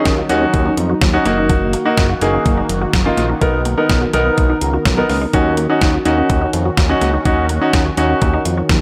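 A clear, polished grand piano up front opens this cool, nocturnal synth-pop excerpt in Eb minor at 125 BPM together with a slowly evolving detuned pad with chorus and a juicy, squelchy resonant pluck arpeggio with phaser and tape echo in the background. A fat saturated sawtooth bass and a thumpy, detuned 8-bit drum machine with tape echo join a moment later, all moving through Ebm7, Gb6 and Bmaj7 in an echo-heavy mix with light digital reverb.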